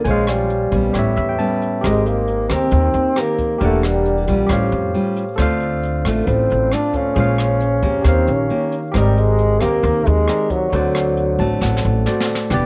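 A breathy trombone carries the melody from the very start of this wistful, smooth bossa nova passage, cut from a longer piece, set at 135 BPM in a straight 4/4. Its tone is mellow and whispered, with light vibrato, a soft attack and a distant, roomy quality that still sits up front and feels intimate in its jazz-style solo role. Around it, a fingerpicked nylon-string guitar plays classical-style accompaniment with audible finger squeak, while a bright, barky tine electric piano adds clean, direct accompaniment and slips in short fills at 0.9 seconds and again near the close. A woody pizzicato upright bass with steel strings stands up front, and a jazz drum kit played with brushes brings an airy, polished studio sound, a high-tuned snare, rim clicks, hi-hat and a punchy kick, ending with a drum fill at 11.6 seconds. The harmony moves through jazz chords such as Bbm7, Abmaj9, Em7b5, A7alt, Eb7 and D7, and light studio reverb gives the whole a gentle sense of space.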